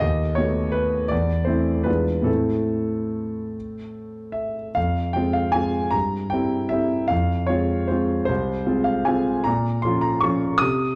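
Bittersweet and wistful, this classical piano waltz is cut from a longer piece and moves in 3/4 with rubato between 138 and 173 BPM, its solo concert grand up front with deep bass and a smooth, vintage tone, shifting from A minor to F minor at 4.8 s inside a moderate large-studio reverb and a dark, warm production.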